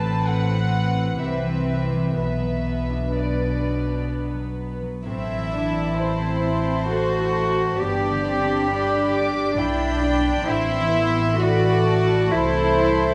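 A dark, warm production sits in a wet recital hall reverb, giving this short cut from a longer orchestral film cue a hushed, bittersweet glow. The music moves at a rubato 60-67 BPM in 3/4, in A dorian, with a feeling of longing. A violin section carries the melody high and floating, with a soft attack and a smooth, pure top, while a symphonic viola section plays a gentle sul tasto accompaniment beneath it. A concert harp rings out fingerpicked arpeggios, and the bass is held by an up-front cello section alongside a shadowy double bass section, all the bowed strings sounding soft-edged and ensemble-like. At 5.1 seconds a second, intimate violin line joins as the harmony moves from Am through G to a closing Amadd9.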